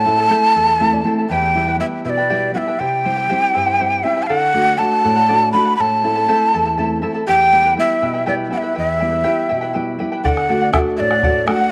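Bathed in a moderate echo-chamber reverb, this short, festive and earthy Andean folk cut in a straight 6/8 at 80 BPM puts a breathy, bright wooden quena up front, its tongued, unsteady melody colored by vibrato, over a shimmering fingerpicked charango with double strings and a dark, full-bodied thumb-plucked nylon-string guitar that adds a fill at 0.6 seconds, while a round bombo joins only at 10.3 seconds as the harmony moves from Am through Em, C and D.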